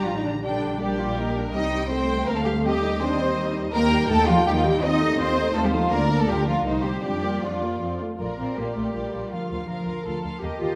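Up front in the mix, the second violins carry a smooth inner line with light vibrato, sounding louder than the first violins, whose rich, focused melody sits more distant above them. This is a quick classical-period movement for string orchestra at 163 BPM in 3/4, played with rubato, and its mood is graceful and cheerful. The harmony settles into Bb major from 3.7 seconds, moving through Eb, F7/Eb and Bb/D before arriving on Bb at 8.2 seconds. Dark violas fill out the accompaniment with soft attacks, expressive portamento and vibrato, while lush, warm cellos and even, bowed double basses anchor the low end. Every section plays from the opening through roughly 10.8 seconds of this cut from a longer piece, surrounded by a reverberant recital hall with a 1.8-second decay.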